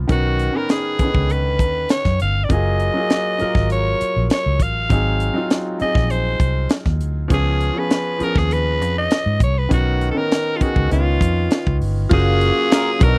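Bright grand piano and a round, foam-muted electric bass open this smooth 1970s-style soul piece at 100 BPM in F# major, joined at once by a tight funk drum kit and a raspy, gritty alto saxophone carrying the melody up front over Bmaj9, F#maj9, G#7 and C#7 chords, before a distant, dark French horn section enters with sustained chords at 12.1 seconds and a slightly broken-up electric guitar with lush chorus plays a brief riff at 12.7 seconds, captured in a dry, close studio sound.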